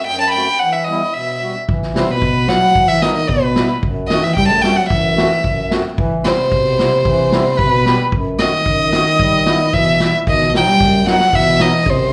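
A dark, sul tasto violin carries the melody up front with light vibrato and an airy bow in this soulful, bittersweet klezmer cut from a longer piece, moving at 112 BPM in 2/4 in E harmonic minor over a reedy, round accordion, both touched by plate reverb and slapback echo. A small-room street-band drum kit with a boomy kick and medium-tuned snare enters at 1.7 seconds, and a veiled trombone with bucket mute and vibrato follows at 1.9 seconds with a low, jazz-style second line, also carrying slapback echo. The performance is heard as a live gig through the venue's PA with moderate club reverb, and the harmony turns to B at 10.3 seconds as a new section begins.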